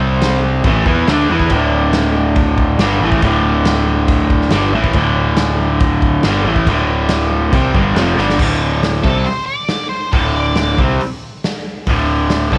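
A straight 4/4 pulse at 139 BPM drives this raw, swaggering garage rock recording, cut from a longer piece. A bright, overdriven electric guitar sits up front, double-tracked and picked, playing a riff over C5 and D5 chords. A picked bass with warm, amped fuzz overdrive plays underneath. The acoustic drum kit enters at 0.2 s with a punchy kick, a medium-tuned snare, hi-hat and crash cymbal, its sound smooth and dark with a rolled-off top in a stone room. A drum fill at 8.2 s ushers in a new section, and at 9.0 s an octave-fuzz lead guitar joins with a dark, distorted, picked melody in a high register, all set in studio reverb.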